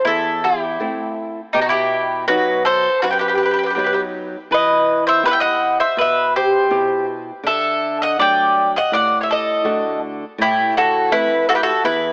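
A Greek bouzouki opens this short cut from a longer Greek folk piece, its bright, metallic double strings picked up front, with some strings doubled at the octave. A mandolin joins at 0.1 seconds on a second line just beneath it, its paired strings round and close. A fingerpicked flamenco guitar supplies the accompaniment from a lower register, sitting further back in the mix. At a straight 81 BPM in 4/4 and in E harmonic minor, the mood is bittersweet and cool, with the harmony moving from Am through B, Em and D before returning to Am at 10.4 seconds. The sound is that of a home cassette recording with an AM radio quality and light reverb, and all three parts carry a cassette tape coloring through to the end at 12.1 seconds.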